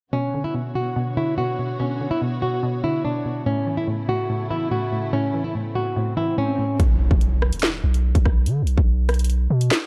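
Ominous and tense, this half-time drill excerpt opens on a fingerpicked, classical nylon-string guitar melody over a hollow, detuned square-wave pluck with chorus and a lush, woody string section holding dark bowed chords, moving from Bmadd9 to Aadd9. An electronic swell rises in the background from 5.9 s, and at 6.8 s an impact lands as the melodic parts stop and the drums take over. The drill kit enters up front with a hard-clipped kick, sharp snare, handclaps, rim clicks and hats, joined by a deep, sine-toned 808-style bass with long, decaying notes, all in a dark production with light reverb.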